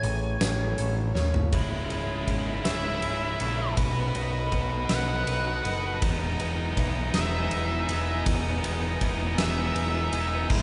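A huge arena drum kit sits up front in this post-rock excerpt, its punchy kick, fat snare and bright cymbals ringing through a hall-like space, with a fill from 1.2 to 1.5 seconds that launches a build-up lasting to the end. The mood is cathartic and melancholic, moving slowly at 54 BPM in 6/8 through Amaj7, C#m, B7 and Emaj7. Beneath the kit, a growling picked electric bass carries an overdriven low end. A clean, twangy twelve-string electric guitar plays compressed arpeggios in the background, and a sweeping resonant pad of detuned sawtooth and triangle tones holds sustained chords with a slow attack, filter swell, chorus and phaser. A dark octave-fuzz lead guitar carries the melody, and at 1.5 seconds a biting overdriven guitar enters up front with a picked riff. The whole piece rests in moderate reverb, with a muted top end that suggests a church or concert hall.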